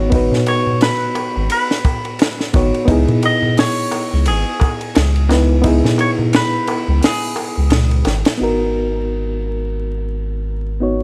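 A reedy, clean electric piano with harmonic tremolo, gritty 12-bit sampler texture and tape echo opens this brooding, hypnotic trip hop excerpt in G# minor at 87 BPM. A deep, round dub sub bass sits up front beside it from the start. A compact, dry cocktail drum kit, with a punchy kick, a high-tuned snare and dark hi-hat and ride cymbals, plays a swung 4/4 feel together with a clay-shelled darbuka played with soft hands in a live room. From 0.5 seconds a bright, twangy clean electric guitar carries the picked melody, trailed by tape echo. The harmony moves from G#m7 to C#m7 and returns to G#m7 at 8.4 seconds, when the drums and darbuka stop and the guitar has already finished, leaving piano and bass to close. Vinyl crackle, light reverb and studio ambience colour the whole recording.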